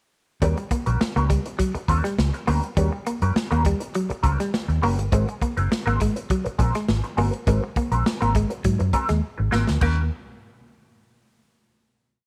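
A round, foam-muted fingered electric bass drives this energetic, playful 102 BPM funk piece with a syncopated riff full of ghost notes and chromatic approach notes, while an airy, polished drum kit with a punchy kick keeps a tight sixteenth-note groove, a mellow, compressed electric guitar scratches out sixteenth-note rhythm through wah and analog chorus, and a dark hollow-body semi-hollow guitar plays a muted single-note line with spring reverb, all moving from Eb7#9 to Ab9 in a small room until a drum fill at 9.2 seconds leads to a closing Eb7#9 chord at 9.8 seconds.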